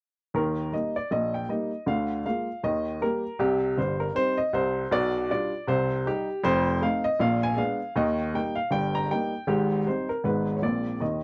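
A woody upright piano sits up front and plays alone from 0.3 to 11.2 seconds, ranging from deep bass notes to the upper treble in this playful, swinging stride jazz piece. At 158 BPM in 4/4 with a swung eighth-note feel in Eb major, the harmony moves through Cm, F7 and Bb7b9 before settling on Abmaj7, Abm and a closing Bb9. The sound is a dry, close 1970s-style studio recording with a moderate booth ambience, and this passage is cut from a longer piece.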